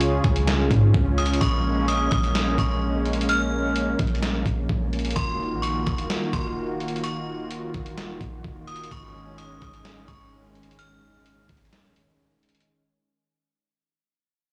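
Atmospheric cloud-rap hip hop at 128 BPM in a dreamy, floating half-time feel, cut from a longer piece: a detuned, smooth analog pad with subtle chorus and sidechain pumping sustains chords moving from Db through Bbm7, Ebmadd9 and Absus4 over a boomy, sine-toned 808-style bass and a muffled, pitched-down sampler drum kit with a thumpy kick, a medium-tuned snare and a compressed, tape-warm character, while a metallic, inharmonic FM bell with chorus and slapback echo rings out a bright, warbling high melody from 1.2 s, the blown-out, overdriven recording fading throughout and thinning to a break once the bass drops away at 11.7 s.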